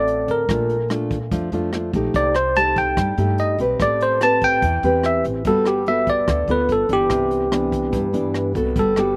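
A bright, bell-like tine electric piano carries the melody up front with a slapback echo in this sunny, sophisticated bossa nova fragment at 145 BPM, over a thumb-plucked nylon-string guitar that shares that echo, a woody, thumpy pizzicato upright bass on gut strings, and a dark, smooth brushed drum kit with a boomy kick and rim clicks, all moving through rich chords from Bbmaj7 and Cm6 to Am9, Gmaj9 and Cmaj9 in a dry, close sound.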